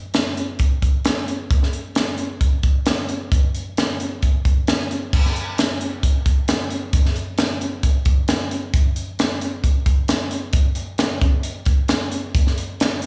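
This rock passage moves at 133 BPM in a straight 4/4, with an intricate, bright mood, and it is cut from a longer piece. A crisp fusion drum kit carries the whole recording alone, entering at 0.1 seconds and playing through to 13.1 seconds. The kit is acoustic and polished, with a high-tuned snare, a punchy kick, hi-hat and crash cymbal, all placed up front in an airy studio room. A moderate recital hall reverb with an RT60 of 1.4 seconds gives the drums a big arena sound. The music shifts into a new section at 5.1 seconds and continues in that second part until the end.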